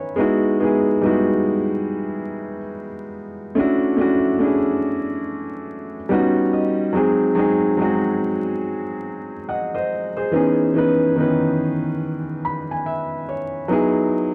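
Cosy and nostalgic, this swung hip hop excerpt at 71 BPM in E major, tuned to A4 = 437 Hz, features a lone felt-muted upright piano, soft, intimate and up front with a low-pass filter, opening with a fill at 0.0 seconds and moving from Emaj7 through Dmaj9, D#7alt, G#7 and C#m7 back to Emaj7 at 13.7 seconds, wrapped in vinyl crackle and a short, wet studio reverb.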